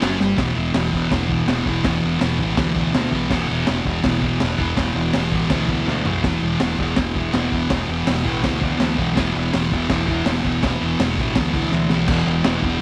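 A thick, double-tracked fuzz guitar sits up front in this raw, swaggering garage rock clip, picking a distorted riff around an E5 chord in the low register. It moves at a driving 164 BPM in a straight 4/4, with the whole passage lifted from a longer piece and running just under 13 seconds. Underneath, a growling fingered electric bass adds a bright, overdriven edge, heard both direct and through an amp. The acoustic drum kit has a crunchy, saturated character with a punchy kick, a high-tuned snare, dark cymbals and a rolled-off top, and it works in crash, hi-hat and toms. Drum fills mark the start, the midpoint around 5.9 seconds and the close near 11.7 seconds. A small room reverb surrounds the band.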